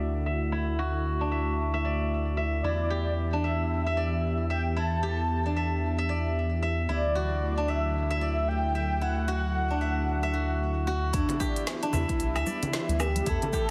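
A silvery steel-string zither, played with fingerpicks, rings up front with filtered, delayed arpeggios over an airy, breathy pad and a round sub bass in this hypnotic organic downtempo piece in E minor, moving at 113 BPM with a swung feel and a slow drift between D and Em7. At 2.6 seconds a soft, flute-like synth lead enters with vibrato and chorus, carrying the melody through a moderate concert-hall reverb and a heavily compressed, radio-like finish. At 11.1 seconds a deep electronic kick and a tape-warm afro-pop kit with a woody snare, crisp hats, shaker and woodblock arrive, joined at 11.3 seconds by bright, soft-handed congas and bongos, before this excerpt of a longer piece cuts off.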